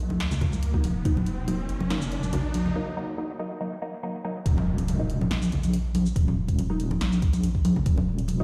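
A dark, meditative deep dubstep excerpt in half-time opens on a filtered, muted dub chord stab with phaser and dub echo over a deep, detuned wobble bass, as a riser, close, dry congas with hard hands and a deep house kit of hi-hat, shaker and punchy snare build through a break toward the drop at 4.5 seconds, where an electronic impact lands and a layered electronic kick returns, all set in a bare stone room's reverb.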